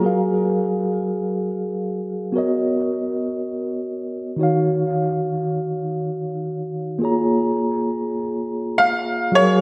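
Chillout excerpt with a relaxed, warm mood in a straight 4/4, where a mellow tine electric piano with analog delay carries the accompaniment through F#maj7, Bmaj7, D#m7 and A#m7 from the start, and a clear, worn baby grand piano with delay and short sustain enters up front only at 8.8 seconds for a brief melody, all set in a dreamy, plate-reverb-soaked mix.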